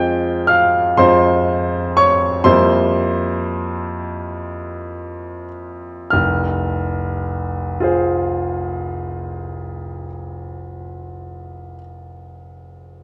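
Worn, warbling cassette tape with a wavering pitch drift colors this short excerpt from a longer romantic nocturne, heard in a recital hall with moderate reverb. A clear, natural grand piano plays solo and up front, moving at a slow, rubato 12/8 pulse of roughly 27-42 BPM in F minor, spanning F1 to G6 across the full 13.0 seconds. The mournful, wistful mood settles from F minor toward C7 over an F bass, slowing through the opening 6.1 seconds before returning to F minor as a new passage begins.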